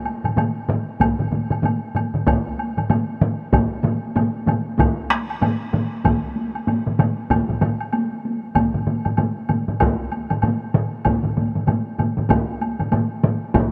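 Swung sixteenths in 4/4 drive this ceremonial, powerful Japanese taiko drum ensemble piece, cut from a longer performance. A distant solo taiko struck with hard sticks in a large room opens at 0.0 s, joined almost at once by a close, woody woodblock, an up-front solo taiko with heavy sticks in a small room, and a taiko ensemble, also with heavy sticks in a small room. A second taiko ensemble arrives at 1.0 s, heavy-sticked and up front in a live room, and every part plays through to 13.7 s under light reverb.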